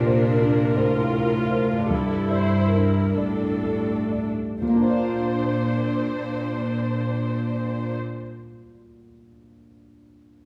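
Bathed in a stone room's reverb, this tender, moving fragment of a cinematic orchestral film score unfolds in a rubato 6/8 that slows through its first 4.6 seconds, as a dark, woody viola section with vibrato and a pure, floating cello section bowed sul tasto sit up front over a natural-toned grand piano and a bright, ringing harp in the background, with the strings and harp dropping out before the piano, which lingers until 10.5 seconds.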